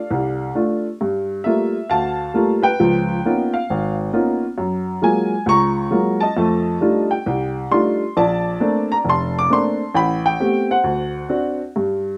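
A woody, slightly detuned upright piano sits up front and plays alone through this short solo jazz passage cut from a longer piece, covering a broad range from deep bass to bright upper notes. The feel is sophisticated and swinging in 4/4, with rich extended harmonies such as Gm9, Db13, Gbmaj9 and F13 passing by before the phrase reaches D7 near 10.8 seconds. A moderate studio reverb gives the natural piano tone a sense of room while keeping it close.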